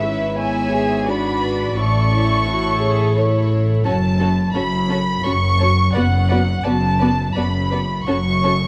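A rubato 3/4 pulse at 86 BPM sways gently through this slow, romantic movement for string orchestra, a melancholic and elegiac passage cut from a longer piece and pitched at A4 = 438 Hz. The harmony begins in A major and turns to F# minor from 3.9 s, moving through E7/G#, A, F#m and B5/F# before settling on F#m at 8.1 s. Up front, a dark, intimate chamber violin section carries the melody in a high register with light vibrato and a smooth top, while a second violin section adds a pure, floating second line beneath it. A rich symphonic viola section fills out the accompaniment, and the cellos and a close, shadowy double bass section share the bass, all bowed sul tasto with soft attacks. Light reverb surrounds the strings, and a prominent vinyl crackle lends the sound a worn, nostalgic patina.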